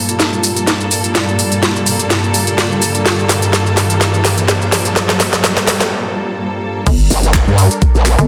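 The recording sounds dense and heavily limited, set in a lush hall reverb, as this aggressive, bouncy bass house cut moves at 126 BPM in 4/4 with a light 16th-note swing in G minor, holding a Gmadd9 chord. A rich, biting symphonic string section sustains chords up front, bowed with light vibrato, low-pass filtered and pumping against the sidechain. Behind them a cloudy granular pad sits in the background, evolving and blurred with its own reverb. A garage drum kit of crisp hats, shaker, finger snaps, handclaps, a crash and a cracking, soft-clipped snare drives a fill through the build-up while a distant electronic riser sounds from 1.2 to 5.9 seconds, and a brief break follows. At 6.9 seconds the drop hits with an overdriven, knocking electronic kick and a hollow, punchy FM bass on G1, joined at 7.1 seconds by a growling, wobbling bass run through chorus and tube saturation, both basses pumping up front.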